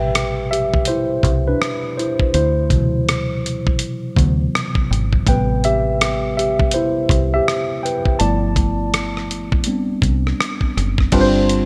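A worn, slightly out-of-tune tine electric piano takes the lead up front, carrying a solo across the first 11.1 seconds with a subtle chorus on its clean, direct tone. This late-night, introspective neo-soul and R&B excerpt sits in A minor at 82 BPM in 4/4, with a 63% swing on the sixteenths giving it a loose, unhurried feel. The harmony moves through Am9, D13, back to Am9, then G13 and Am11 before landing on G7sus4 at 11.1 seconds. Underneath, a deep dub fingered electric bass plays low and round, its foam-muted, dark sound coming through direct and amped. A dusty, sampler-style soul kit enters at 0.2 seconds, compressed and gritty, with a thumpy kick, hi-hat, rim click and crash cymbal sitting prominently in the mix. Light reverb and a bright 1980s-style digital production frame the whole groove.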